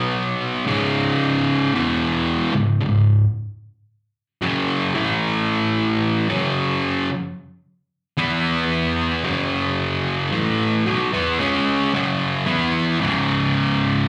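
A lone fuzz guitar, distorted and double-tracked with a slapback echo, grinds up front through a slow, heavy, brooding metal passage in C# minor at 56 BPM, its compressed, picked chords moving from B5 through C#m, F#5, A5 and E5 before settling on C#5 at 13.0 seconds, all carried by the light club reverb of a live gig heard through the venue's PA in this clip from a longer piece.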